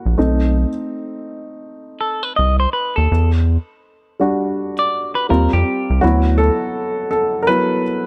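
A relaxed 82 BPM groove in 4/4 rolls along with a 62% swing on the sixteenths, giving this smooth R&B cut from a longer piece an easy, unhurried lilt. A baby grand piano with an intimate, natural tone and audible action noise carries the passage from 0.0 to 8.1 seconds, its short-sustained voicings sitting up front as it takes a solo. Beneath it, a rubbery square-wave bass with a sine-like roundness enters at 0.1 seconds, its resonant filter pluck, fast attack and dark, bouncy hollowness holding the low end until 6.5 seconds. A clean, fingered semi-hollow electric guitar adds a dark second line between 2.0 and 6.0 seconds. The harmony drifts from B7b9 to Em9, then slides through Eb69 to D69, all set in a small room ambience.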